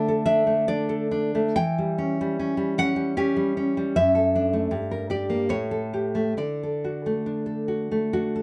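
A sunny, tender romantic piece for solo classical guitar in a rubato 3/4, this short excerpt from a longer work features a full-bodied, fingerpicked nylon-string guitar sitting up front with audible finger squeaks, caught by close, detailed microphones in a moderate studio reverb over a faint mains hum as the harmony drifts through a touch of G minor before settling home on D at 6.4 seconds.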